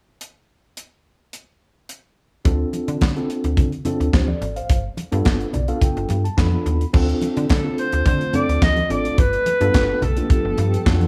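A tight, dry funk kit opens this short cut from a late-night, danceable early-eighties boogie funk groove at 107 BPM, its high-tuned snare, bright cymbals, handclaps and tight kick carrying a gated reverb. A mellow tine electric piano enters at 2.4 s, and from 2.5 s a snappy FM bass with a metallic attack and low-tuned congas in the background join over Dm7 and G9 chords, with an electric piano fill leading into the final section. A breathy, whispered alto saxophone melody with light vibrato arrives at 7.5 s, and a very quiet, silky string machine adds sustained chords in a small-room ambience.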